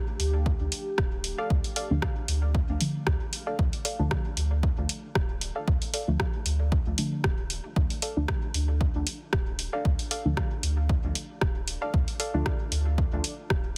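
A punchy analog drum machine ticks out hi-hat and rim click over an up-front electronic kick at 115 BPM in 4/4, with a 16th-note swing giving this hazy, meditative dub techno groove in D minor its loose sway. A clean sine sub bass pumps underneath, while a nostalgic, lo-fi tape-like pad sustains a D minor chord with chorus and reverb until 3.6 s. From 1.4 s, a muted, filtered dub chord stab ripples through dub echo, joined at 1.9 s by a soft, detuned, vintage-sounding deep chord stab with phaser and the same echo, all inside a heavily compressed, radio-like digital ambience.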